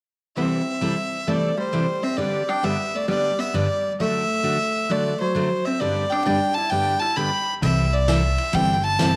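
A moderate echo-chamber reverb surrounds this playful, swinging western swing excerpt, cut from a longer country piece. Up front, a clear, airy fiddle with light vibrato and an earthy edge carries the melody over a full-bodied, picked dreadnought acoustic guitar. A dark, clean, compressed hollow-body jazz guitar adds a second line until 7.5 seconds, and at 7.6 seconds a woody, thumpy gut-string upright bass arrives up front while a distant big-band drum kit joins in the background on hi-hat, ride cymbal and snare.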